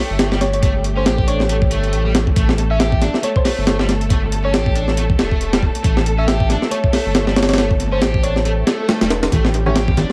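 A gritty, compressed sampler-style breakbeat kit leads this swaggering, swung breaks excerpt, its thumpy kick, medium-tuned snare and hi-hat up front with dub echo, while a deep, thick sub bass anchors the low end. A double-tracked overdriven electric guitar riff with tube saturation and dub echo rides over dark, bowed chamber strings pumping under sidechain in the background, and a round, tine-like FM pluck with chorus and a small-speaker tone carries the melody. The kick drops out from 8.5 to 9.3 seconds beneath a very quiet electronic swell; low-tuned, damped congas then enter, a clear grand piano stab with 12-bit sampler grit lands at 9.7 seconds, and the whole echo-heavy mix sits in light reverb with vinyl crackle.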